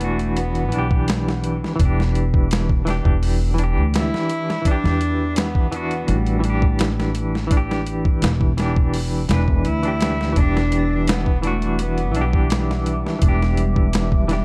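Melancholic and hypnotic, this 84 BPM trip hop excerpt in E minor rests on a single Em7 chord, with a gritty, pitched-down boom bap drum kit, woody pizzicato upright bass and a clean, hollow-body electric guitar with tremolo, filtering and tape echo all up front, while a floating, bowed cello carries the melody through tape echo and 12-bit sampler grit until 12.5 s and a detuned, warbling pad drifts in at 11.2 s in the background of a dark, lightly reverberant mix.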